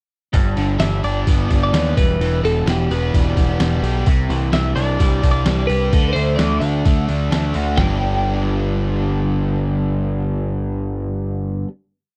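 Indie rock in G major at 129 BPM, upbeat and carefree, built on a dry, close 1970s-style studio sound where a biting, double-tracked overdriven guitar plays picked arpeggios over a growling, overdriven bass driving eighth notes through a G, Em, Cadd9, D progression. A gritty, pitched-down trip hop sampler-style drum kit with a thumpy kick and tape-warm character lays down a big rock groove until 7.9 s, while from 0.8 s a clean, compressed twelve-string electric guitar with phaser and slapback echo adds hook phrases. The piece closes on a final G chord held from 7.8 s.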